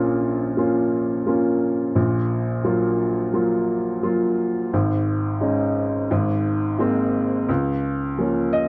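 In a straight 4/4 at 87 BPM, this short folk fragment, cut from a longer piece, is carried by a lone upright piano spanning Ab1 to Eb5. Its woody, open tone and long sustain sit up front as it moves from Bbm through Gbmaj7/Bb, Absus4 and Abadd9 before coming to rest on Db6 at 7.5 seconds. The mood is intimate and tender, framed by a light reverb and a dark, warm production.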